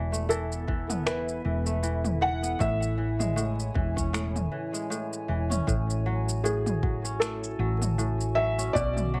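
A felt-muted upright piano carries the melody from 0.3 seconds, soft and intimate with audible action noise, over bright, crisp fingerpicked kora arpeggios and a round, dark hollow-body electric bass sitting up front with tube saturation. This short folktronica excerpt in F# minor moves at 78 BPM with a gentle 16th-note swing, feeling intimate and autumnal as the chords pass from Esus4 to Amaj7 to F#madd9/A. A detuned, warbling tape-like pad holds nostalgic sustained chords beneath, while an overdriven organic electronic kit of finger snaps, shaker and toms is soon joined by a soft overdriven electronic kick, all set in light reverb with vinyl crackle and tuned to A4 = 438 Hz.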